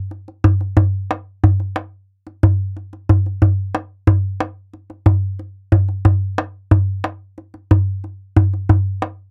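A close, dry 1970s-style studio sound with a short booth ambience frames this brief Persian cut from a longer piece, where a lone tombak, deep and up front under soft hands, carries a soulful, longing mood at 91 BPM in straight 4/4 from 0.1 to 9.2 seconds, moving into a new section at 3.1 seconds.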